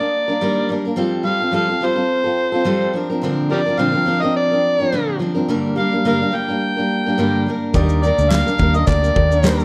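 Acoustic pop with a heartfelt, easy-going mood and a gently swung feel, cut from a longer piece. An overdriven harmonica carries the melody up front from the start, its gritty, amplified tone coloured by light vibrato and tongue slaps, while a picked steel-string acoustic guitar accompanies it up front with a warm, auditorium-like body. At 7.7 seconds the arrangement fills out: a loose indie drum kit arrives with a punchy kick, fat snare and shaker in a pumping room sound with a rolled-off top. A dark, foam-muted fingered electric bass joins at the same moment, round and up front, and a clear, polished baby grand piano enters alongside them in the background. Crisp, close and dry group handclaps join at 8.3 seconds. The whole passage sits in a moderate recital hall reverb, with the chords moving from Ebmaj7 through Fadd9, Bbadd9 and Gm before returning to Ebmaj7.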